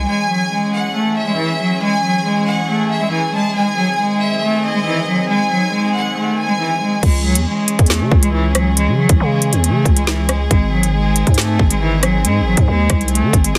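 A dense, heavily limited modern mix with light reverb opens this dark, cold drill cut, taken from a longer piece at 138 BPM in 4/4 with a half-time feel, in C# harmonic minor and tuned to A4 = 437 Hz. A rich, reedy cello carries the melody throughout, a single bowed player with light vibrato and a nasal, gut-string, period-style tone that sounds distant yet sits up front. Above it, a clear studio violin section plays a biting, intense second line with a smooth top and tape echo, stopping at 7.0 seconds. Underneath, an intimate chamber string section holds sustained chords played sul tasto, warm and close, moving between C#m and G#. At 7.0 seconds the growling, buzzy 808-style bass takes hold with a fast attack and decaying sine body, joined by an electronic drill kit up front with a hard-clipped kick, woody snare, crisp hi-hats, rim clicks and crash cymbal.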